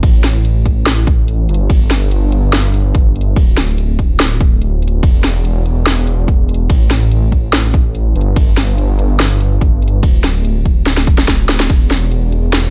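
Bittersweet and lush, this future bass excerpt moves at 144 BPM in 4/4 with a half-time feel, set in E minor and tuned slightly sharp to A4 = 441 Hz. A thick, detuned saw bass sits up front from start to finish, its unison sawtooth layers blended with square and sine tones, fast in attack, sustained and saturated, with chorus and sidechain pumping giving it a mellow, breathing weight low in the range. Alongside it, a punchy, layered electronic kick drives the groove until 11.8 seconds, heard in studio ambience. A trap kit adds a sharp snare, metallic hi-hats and ride cymbal close in the mix, and a drum fill arrives from 10.9 to 11.7 seconds before the piece is cut off. The sound has a digital ambience, and lossy compression artefacts are audible throughout.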